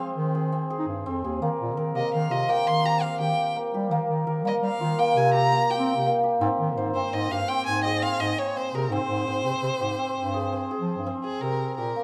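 A hammered dulcimer opens at 0.0 seconds with shimmering, ringing arpeggios, joined almost at once by a mellow bass clarinet carrying the bass line in a classical style. This is contemporary chamber music in 7/4 at 168 BPM with a straight feel, and the uneven meter gives the excerpt an urgent yet hypnotic pull. At 2.0 seconds a single bowed violin takes the melody, its focused tone enriched by vibrato as it climbs as high as C6. All three instruments are placed up front in a recital hall with moderate reverb. The harmony moves from a rootless Fm7 through Ebadd9 and Abmaj7 before settling on a thirdless C7 at 11.4 seconds, just as this fragment of a longer piece is cut off.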